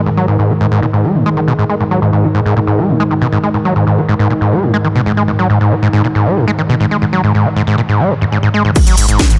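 Driving peak-time techno at 138 BPM in 4/4, industrial in mood, where a deep, moody detuned sawtooth pad drones with chorus, built-in reverb and sidechain pumping beneath a squelchy, gritty acid bass riff whose filter sweeps until 8.8 seconds, when an overdriven, up-front kick, a cracking snare with smooth hats, shaker and crash, and a thick saturated sub bass on G#1 crash in just before this cut from a longer piece ends.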